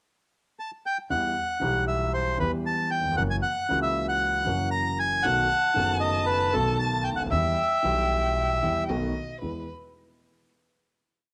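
A home cassette recording with light reverb and lossy compression artefacts frames this short, complete tango in E harmonic minor at 116 BPM, dramatic and sultry with a rubato feel. A reedy, close-miked bandoneon carries a motif-based melody in period phrases from 0.6 seconds, while a dark, mellow piano with audible action noise and a woody pizzicato upright bass play the tango rhythm of uneven groups of three and two eighths through Em, F#7 and B7; the bandoneon, piano and violin carry a cassette tape colour and plate reverb. At 5.2 seconds a single bowed violin adds an expressive counter-melody with vibrato and portamento, and the piece comes to rest on a final E chord at 9.4 seconds.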